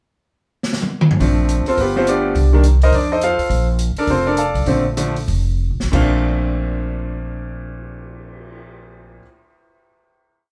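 Moderate studio reverb frames a jazz piano trio playing live together in one room, a playful, sophisticated whole piece in Bb major that swings at 178-210 BPM. The drums open with a fill at 0.6 s, using dark cymbals, a boomy kick and stick time on the hi-hat. An up-front, clear-toned concert grand then states a bebop-style theme with syncopated comping and rootless voicings over a woody pizzicato upright bass in a two-feel, moving through Bbmaj9, G7, Cm7 and F7 before the tempo slows from 3.5 s and another fill leads into a final chord at 5.9 s.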